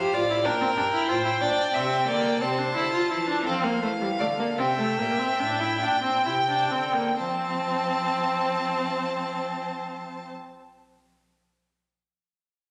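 In a straight 12/8 pulse that slows over the first 7.2 seconds before settling on F at 7.2 seconds, this lively, joyful baroque-style fugue for string quartet, cut from a longer piece, moves through Gm, F/C and C7 as a clear, smooth, close first violin carries the melody above an even second violin line, a focused, up-front viola accompaniment and a rich, distant cello bass, each bowed with vibrato by a single player in a reverberant recital hall, with some lossy compression artefacts.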